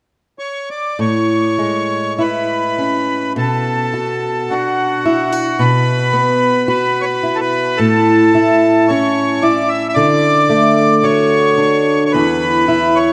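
A wet cathedral reverb with a long 4.8-second tail wraps this dark, warm production, a Celtic slow air in A major at a rubato 50-56 BPM with a nostalgic, tender mood. A reedy, mid-forward accordion carries the melody from 0.4 seconds, joined at 1.0 seconds by an up-front, fingerpicked old ladder-braced acoustic guitar whose woody, boxy tone and old strings underpin chords moving from Amaj7 through Bm7 and Esus2/B to A, D and E5. The passage is cut from a longer piece.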